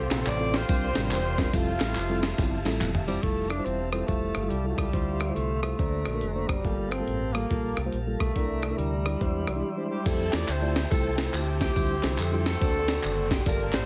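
Jubilant yet reverent, this uptempo gospel piece moves at 141 BPM in a swung 4/4 in F major, heard as a short cut from a longer performance. A mellow saxophone section with a light vibrato and tape echo carries the melody at the opening and returns at 9.9 seconds. Between them, a breathy, whispered tenor saxophone takes an intimate, close-miked solo from 3.1 seconds. Underneath, a clean tine electric piano plays accompaniment throughout, while a soft, flute-like tonewheel organ holds chords in the background through a slow rotary speaker. A round, fingered electric bass with an envelope filter anchors the low end, and a gritty, sampler-style breakbeat kit with a thumpy kick sits up front, joined by handclaps and tambourine in the outer passages. The harmony leans on lush extended chords such as Fmaj9, Dm11 and Gm9, a drum fill and a brief break set off the solo, and the whole is wrapped in light reverb with a heavily compressed, radio-like sound.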